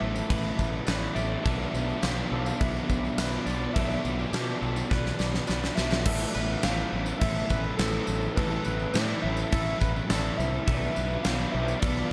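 A roomy, hall-like mix puts a huge arena drum kit up front, with a punchy kick, fat snare and bright cymbals, beside a fuzzed, overdriven fingered bass in this brooding, dreamy slice of shoegaze and dream pop rock at 104 BPM, moving between Asus2 and Bdim. A layered wall of picked overdriven guitars sits behind them: a crunchy one with analog chorus, a dark compressed one, and a very quiet double-tracked cranked stack guitar that drops out at 6.1 seconds after a drum fill from 4.9 seconds. Above, a round, gentle FM synth lead carries the warbling melody through chorus, tremolo and digital delay, while a twangy clean guitar picks chorused, delayed arpeggios, a glassy, ethereal FM pad holds slow-blooming chords, and a faint, jingly vintage tambourine adds shimmer.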